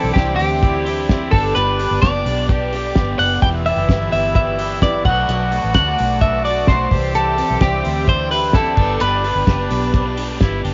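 Heard through a homemade cassette recording with light reverb, the sound is softened at the top, with its highs stopping at 7.5 kHz. This short cut from a longer jangly indie pop piece sits in G major at 129 BPM in a straight 4/4, and the mood is nostalgic and youthful. A bright, twangy twelve-string electric guitar carries the melody with analog delay, while a second twelve-string, up front, picks clean, compressed arpeggios through a phaser. A clear trumpet with scooped notes plays a second line beneath it. Further back, a raw, overdriven garage guitar with phaser picks out accompaniment, and a smooth, detuned sawtooth pad holds soft-attack chords with chorus. A round, punchy, foam-muted fingered bass anchors the low end, and a cloth-damped, thuddy drum kit with a fat snare, tight kick and dark cymbals enters at 0.2 seconds, as the chords move through Cadd9, G, Em and Bm7 before returning to Cadd9 and G.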